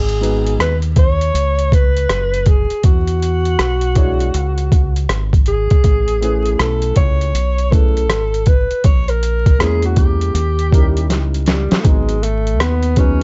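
A distant, vibrato-laden alto saxophone and a round, up-front fingered electric bass with tube saturation open this nocturnal, cool jazz-hop excerpt at 80 BPM, soon joined by a pitched-down, compressed boom bap sampler kit with a thumpy kick and medium-tuned snare, and a mellow, woody upright piano in the background. The swung sixteenths carry a progression that moves from G#m7 through E69 and Amaj9 to a tense A#m7b5 and D#7b9 before returning to G#m7 at 11.8 seconds, just after a drum fill. The gritty, dry hardware sound, topped with vinyl crackle and dark, rolled-off highs, gives the whole piece a dusty late-night character.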